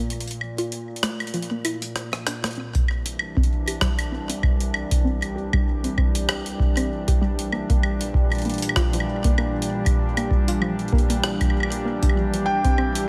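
Wistful and intricate, this IDM excerpt at 97 BPM with a light 16th-note swing sets a warbling, nostalgic pad with chorus and reverb beneath a dark, nasal pluck arpeggio coated in 12-bit sampler grit and tape echo, while a gritty, pitched-up jungle-style sampled kit of hi-hat, rim click and woodblock with delay opens in a break and a short fill before a deep, up-front analog kick joins at 2.7 s, the harmony moving from Cadd9 to Bb6 and back, and a soft, felt-muted upright piano with audible action noise touches a single G5 at 12.5 s just before the cut.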